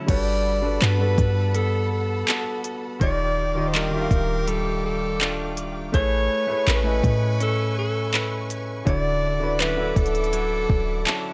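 Captured in a small room, this smooth, tender contemporary R&B excerpt features a breathy alto saxophone up front, carrying the melody with vibrato and a whispered, jazz-style tone. Beneath it, a concert grand piano with audible action noise plays accompaniment, a clean electric guitar recorded direct picks compressed arpeggios, and a lush bowed string section holds sustained chords. A deep, boomy 808-style bass and an overdriven electronic drum kit with a soft kick, crisp hi-hat, handclaps and crash cymbal carry the pulse, and the piano adds a fill at 10.7 seconds.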